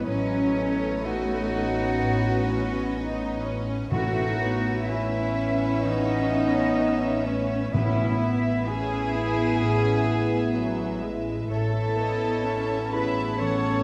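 Floating, pure violins carry the melody of this uplifting, moving cinematic orchestral score in a free rubato, joined by a hollow flute, a mellow clarinet and a second violin line, over dark, woody violas, ringing thumb-plucked harp arpeggios, soft-attack cellos and double basses, distant, roomy French horn chords and hard-mallet timpani from 3.9 to 9.1 s, set in a wet scoring-stage reverb.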